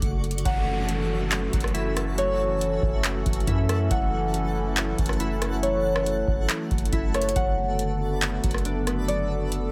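Melancholic and ethereal, this half-time atmospheric cloud-rap excerpt sets a booming analog drum machine with a deep kick, metallic hats, handclaps and rim clicks up front beside a long, mellow 808-style bass, under a hollow, flute-like pad pumping with sidechain and chorus, a twinkling granular texture with octave-up shimmer and its own reverb, glassy digital keys playing arpeggios from 0.4 s through chorus, phaser, filter and delay in the background, a thumb-plucked, ringing Celtic harp melody entering at 0.5 s with filter and delay, and a brief electronic downlifter sounding from 0.5 to 3.9 s, all in a dry room over F#m7 moving to Bm7/F#.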